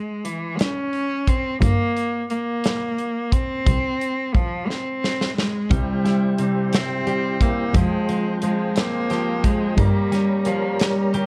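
A smooth, vibrato-laden bowed cello carries the melody from the opening of this aching, melancholic six-eight pop ballad excerpt, joined almost at once by a tight, up-front acoustic drum kit and soon by a softly bowed double bass played sul tasto with an airy, intimate tone. After a drum fill around 4.7 seconds, a clear concert grand piano with short sustain, a mellow, flute-like tonewheel organ with chorus vibrato and key click, and a clean, compressed electric guitar picking arpeggios through spring reverb and tape echo all enter at 5.7 seconds. The whole recording sits in light small-room reverb and carries the worn, warbling pitch drift of old cassette tape.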